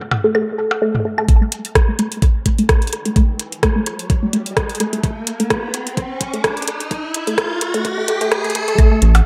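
Minimal techno at 128 BPM in 4/4, with a light swing on the sixteenths and a hypnotic, cool mood, cut from a longer piece. A squelchy, resonant blip pluck carries the riff between A3 and A4 from the opening, colored by phaser, tape echo and sidechain pumping, while electronic toms, percussion blips and claves drift through dub echo and a filter sweep moves over the synth arpeggio. At 1.3 seconds a knocking, up-front electronic kick enters alongside a garage kit of metallic hi-hats and rim clicks, its hats, snare and room darkened by low-pass filtering and thrown into dub echo. From there the passage becomes a build-up, with another filter sweep and an electronic riser climbing until 8.8 seconds. Just at the close, a round, deep analog bass on A1 arrives, fast in attack and pumping with sidechain. The mix is echo-heavy and high-passed, set in a moderate spring reverb and digital ambience.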